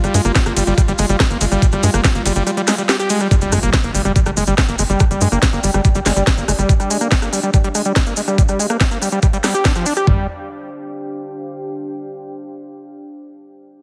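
Driving straight 4/4 at 142 BPM in G phrygian, this alien, intense psychedelic trance excerpt opens on a drop with a squelchy, screaming distorted acid riff with dub echo and sidechain pumping over a tight, punchy sawtooth sequencer bass, a knocking kick and toms up front from 0.4 s, cracking snare, crisp hats, ride and rim click, grainy maracas in the background, and an evolving, warbling wavetable pad that drops out at 3.4 s, as a very quiet electronic impact lands at 3.3 s and a deep, moody detuned ambient pad enters at 4.8 s to linger after the drums stop at 10.1 s, all under a heavily compressed, radio-like sound with light digital ambience.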